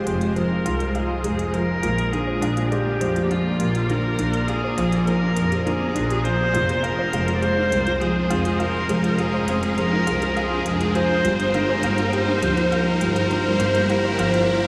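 Piano and strings electronica in F dorian at 102 BPM, this cinematic, melancholic excerpt builds throughout as a rich viola carries the melody up front with expressive vibrato and portamento, over a felt-muted upright piano riff whose intimate tone carries audible action noise. A blurred granular cloud pad with analog chorus holds sustained chords in the background, while a very quiet, warbling round pluck plays arpeggios, a con sordino double bass section bowed with a veiled tone supplies the bass, and crisp, overdriven electronic hi-hats tick faintly beneath. An electronic riser enters at 5.6 seconds, and the whole dreamy mix is soaked in a huge reverb as the chords move from Fm to Bb, back to Fm, and on to Gm7.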